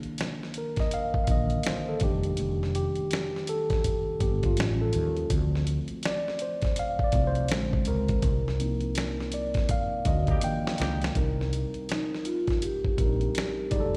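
A mellow tine electric piano leads this late-night, sultry R&B and neo-soul excerpt. Its clean, up-front tone carries a slapback echo and plays a solo from the start until 11.2 seconds, moving through chords such as Cm7, F13 and Bb9. At 82 BPM in 4/4 with a swung sixteenth-note feel in C dorian, it sits over a dusty sampler-style drum kit of hi-hat, thumpy kick and medium-tuned snare, compressed, gritty and up front. Beneath it runs a dark, growly fretless electric bass with a round, hollow-body character. The band hits accents and the drums play a fill late in the first section, while a tight vintage horn section with octave doubling and its own slapback echo adds brief stabs in the background. After the harmony settles back on Cm7 for a new section, a vibraphone played with soft mallets enters at 11.9 seconds with a short, airy, ringing melody carried on slow motor vibrato. The whole sounds like a live gig heard through the venue's PA, with recital-hall reverb around it.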